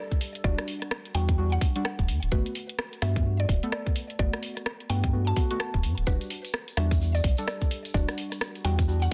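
UK garage in a two-step vein, this short late-night, soulful excerpt swings on a tight, up-front electronic kick and a layered garage kit of hi-hat and rim click, with soft clipping on the snare, under a thick, saturated sub bass that enters at 0.4 seconds. Deep, dark chord stabs with ring modulation, chorus and tape echo move from Em9 to Gmaj7 and back at 6.1 seconds, while a woody, round, mallet-like FM pluck carries the melody through chorus, phaser and digital delay. A grainy, vintage egg shaker joins at 6.1 seconds, and the dry mix is dense and heavily limited.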